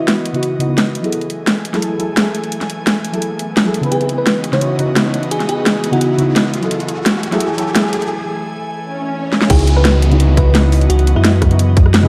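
A deep, full sine sub bass with an octave layer sits up front throughout this melancholic, rolling liquid drum and bass excerpt, its fast attack and sustained notes anchoring the low end. Above it, a soft, dark chord stab built from detuned triangle, sawtooth and wave-folded tones plays decaying accompaniment through chorus and dub echo. An airy, breathy pad holds long chords, with a slow attack, a noise layer and sidechain pumping. A bell-like, sparkling FM electric piano drifts in with short melodic phrases, coloured by chorus, phaser and tape echo while a filter sweeps across it during the build-up. Layered, overdriven electronic drums with a cracking snare and bright hats drive the build, as a riser and swell hover in the background, a brief break arrives at 8.1 seconds, and a drum fill leads into the drop at 9.5 seconds, where a tight, overdriven kick joins. The production is dark and warm, set in a moderate scoring-stage reverb, and the chords move between C#m11 and F#m9.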